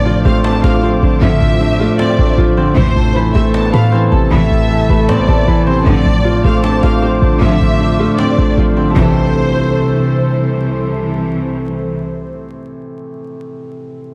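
Trap-inflected hip hop at 155 BPM in a half-time feel and A minor, this eerie, brooding fragment sets a dark, boxy grand piano and a punchy, tight 808-style bass up front beneath lush bowed strings stabbing from 1.2 s, a distant vibrato violin section with delay, a ringing fingerpicked harp with delay, a warbling lo-fi pad with chorus and phaser in the background, and a faint, woody cajon, all over Dm7/A and Amadd9 chords that settle on Am at 9.0 s in a dense, heavily limited master with vinyl crackle.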